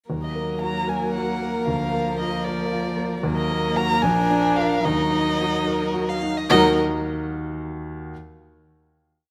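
A quick, restless classical-period movement for piano quintet opens at 0.1 seconds, with the grand piano's clear, intimate broken chords spread across a broad range and the strings' sustained chords entering together. In Eb minor and a straight 6/8 at 75 BPM, counted in dotted quarters, the stormy harmony moves from Ebm to Bb/D and back, then through Bb7 before settling on Ebm. Up front, a dark-toned violin carries the expressive melody with vibrato and portamento. A second violin of warm, soft-attacked tone adds vibrato-laden sustained chords and answers at phrase ends, while a smooth, even viola and a rich cello fill in the bowed harmony beneath. The strings stop at 6.8 seconds, leaving the piano, with its natural sound and audible action noise, to carry the final chord until 8.1 seconds. Close, detailed miking captures each single player inside a moderate scoring-stage reverb.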